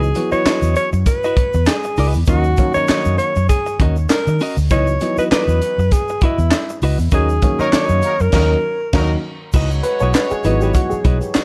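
A dark, lightly reverberant sound frames this sly, driving funk excerpt at 99 BPM in C# dorian with a swung sixteenth feel, where a breathy, subtoned alto saxophone with scooped notes carries the melody up front until 9.2 s over woody upright piano stabs with tape echo, a round, foam-muted electric bass, a clean picked electric guitar, a crisp drum kit with a high-tuned snare, tight kick, hi-hat, crash and handclaps, and a grainy egg shaker in the background, before a distant horn section adds a second line from 7.6 s and the piano takes a solo at 9.5 s.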